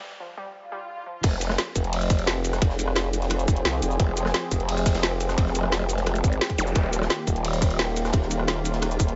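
A growling, saturated bass sits up front in this dark, mechanical stretch of technical drum and bass, cut from a longer piece. It opens on a brief break and build-up with a filter sweep, where a warbly, dusty pluck plays lo-fi arpeggios with chorus, tape echo and sidechain pumping, and electronic swell and zap effects enter at 0.6 seconds. The drop lands at 1.2 seconds. An overdriven, tight electronic kick, a layered kit with a woody snare, metallic hats, rim click, shaker and crash, and a gritty, saturated breakbeat kit with dark cymbals sitting in the background all come in together. A sweeping, detuned sawtooth pad holds evolving chords with a filter swell and slow attack, pumping along with the bass, while a formant-sweep wobble bass joins in bursts, returning at 6.6 seconds. The harmony moves from Fmadd9 to Eb near the end, all under light reverb and a rolled-off top.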